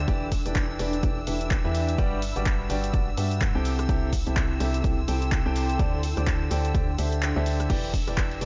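A woody, intimate upright piano riff with audible action noise and delay leads this bittersweet, soulful piano house excerpt in E minor at 126 BPM, pumping over a hollow, organ-like FM bass, a punchy overdriven kick that drops out from 7.2 to 7.7 s, a dry analog drum machine of claps, hats, shaker, rim clicks and cymbals, shimmering vintage string-machine violins and a cloudy granular pad in the background, all within a dark, lightly reverberant mix.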